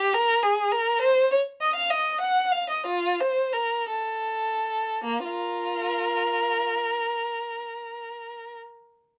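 In a rubato 6/8 lilt of 49 to 71 BPM that slows down until 5.0 seconds, this introspective, solemn excerpt from a baroque-style suite movement features a single up-front bowed violin alone from 0.0 to 8.6 seconds, its rich, focused tone shaded with vibrato and set in a dark production with light reverb.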